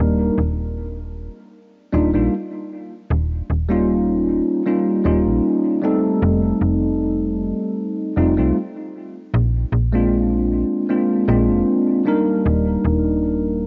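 Faded and dreamy, this unhurried vaporwave excerpt at 77 BPM in Eb major drifts on a lightly swung feel, with a bright, bell-like tine electric piano carrying the chords through analog chorus, delay and a gritty vintage-sampler edge, while a snappy, metallic FM bass with tube saturation sits up front beneath it, the pair washed in a lush hall reverb and a cassette-dulled home-recording sound as the harmony moves from Ebmaj7 through Eb7, F7 and Bb7 before returning home.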